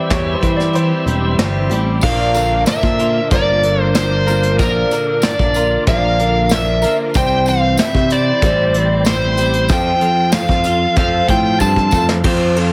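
A straight 4/4 groove at 94 BPM, laid down by a soft, roomy brush kit and an up-front picked electric bass, carries this reflective, wistful folk rock and heartland rock excerpt, where a dark, overdriven slide guitar with slapback echo sings the melody over a boxy acoustic archtop, a clean twelve-string electric riff with ensemble chorus, and a very quiet tonewheel organ holding sustained chords through a slow rotary speaker, while a brilliant, woody upright piano offers a brief second line until 1.8 s, a jingly tambourine joins at 2.0 s as the chords move from C/E through Bb, C and F, and a drum fill at 11.6 s closes the passage, all under light studio reverb and a heavily compressed radio sound.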